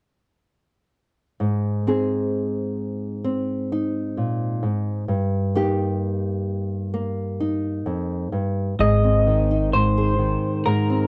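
A dry, close recording in a 1970s studio style frames this short excerpt of a hopeful, tender acoustic folk-pop ballad in a straight 4/4. A small, dark-toned nylon-string guitar, fingerpicked and up front, carries the accompaniment from 1.4 seconds. At 8.8 seconds a slightly broken-up, lo-fi electric guitar played through a small old amp enters with a compressed, tremolo-tinged melody, joined briefly by a woody, thumpy pizzicato upright bass on gut strings.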